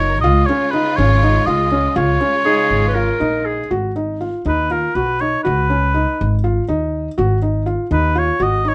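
Closely miked and detailed, with light reverb, this playful, hopeful contemporary chamber excerpt moves in an uneven 7/8 pulse. A mellow oboe with light vibrato carries the melody over soft arpeggios from a felt-muted upright piano, whose audible action noise adds intimacy, while a woody, growly pizzicato upright bass holds the low end and a clear, bowed string section sustains chords until 3.7 s. A roomy clarinet adds a brief second line from 2.5 s, and the harmony moves from Db through Abm7 and Db7sus2 to Ab5.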